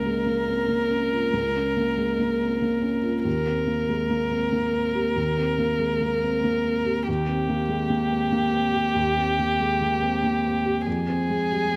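Fragile and reflective, this brief neoclassical excerpt drifts in a rubato 3/4 at 94 BPM, tuned to A4 = 439 Hz, as a single up-front con sordino violin sings a veiled, softly attacked melody with vibrato over a dark, intimate felt-muted upright piano whose thick felt and audible action noise sit close, all through a moderate scoring stage reverb as the harmony moves from Db6 to Cm7/Eb at 3.3 seconds and on to Fmadd9 at 10.9 seconds.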